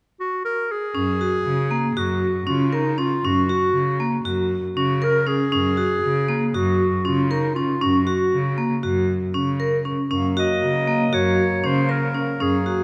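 Playful and shimmering, this contemporary instrumental moves at a brisk 236 BPM counted in eighths, in a straight 9/8 centered on G-flat major. A clear, classical-style solo clarinet carries the melody from the very start at 0.2 seconds, sitting up front. The vibraphone, struck with hard mallets, soon adds bright, metallic, ringing arpeggios with a slow motor vibrato. Alongside it, a single bowed cello supplies a smooth, even bass line with vibrato. Near the end, at 10.1 seconds, a pedal harmonium slips in with reedy, breathing, mellow sustained chords. The whole ensemble sits in a wet scoring-stage reverb, and the recording is a section cut from a longer piece.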